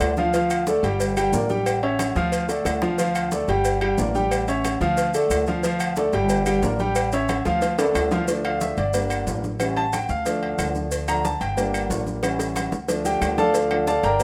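A straight 4/4 salsa groove at 182 BPM drives this danceable excerpt in D harmonic minor, cycling through Dm, Gm and A7 as timbales and agogo bells ring out from a live room, tight high-tuned cowbell and bongos sit in the background beside medium-tuned congas, grainy maracas sound distant, and very quiet claves click dry and close. A growly, thumpy pizzicato upright bass with steel strings anchors the low end, while a clear, up-front concert grand piano with deep bass carries the accompaniment before taking a solo from 8.3 seconds to the end. Drum fills land around 2.5, 7.5 and 12.2 seconds, and the light reverb and studio ambience give the whole track the rough feel of a home demo mix.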